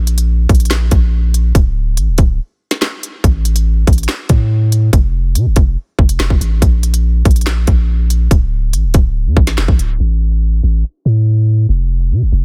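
The sound is dry, dense and heavily limited, with a low-pass filter shading the top of the mix. This dark, menacing drill hip hop track runs at 142 BPM in 4/4 with a half-time feel and is tuned slightly flat, to A4 = 437 Hz. A deep, mellow 808-style bass holds long sine notes with a fast attack and a decaying tail, sitting up front and ranging from D1 to C3. An electronic drill kit joins at 0.1 seconds with a hard-clipped kick, a woody snare, crisp hi-hats and handclaps, also placed up front. A brief break arrives at 2.4 seconds, and from 10.0 seconds a filter sweep carries the track into a new section until this cut from a longer piece ends.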